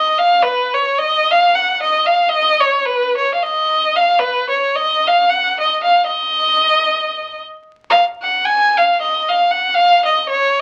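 Restless and bittersweet, this Balkan folk fragment in Eb minor unfolds in free time, cut from a longer piece. A single bowed violin plays solo from start to finish, bright and focused, with vibrato, sitting close and up front in a moderate club reverb, and its line shifts into a new section at 7.9 s before ending at 10.6 s. The sound carries the crackle of a very old 78 rpm record.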